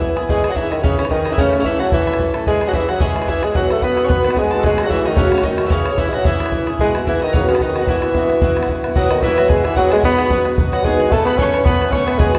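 This bright, cheerful Celtic reel in E major moves at 222 BPM with a swung feel, and it is cut from a longer piece. A punchy, classical-style bassoon carries the melody up front with light vibrato from the first moment. Around it, a close, biting fiddle with an airy bow and a woody, double-strung mandolin in the background play second lines, while a boxy, shimmering twelve-string acoustic guitar with octave doubling picks the accompaniment and a tight, damped bodhran sits up front. The ensemble rings in the wet reverb of a church or concert hall, shifting to a new section at 9.0 s where the harmony turns to B6 and Aadd9.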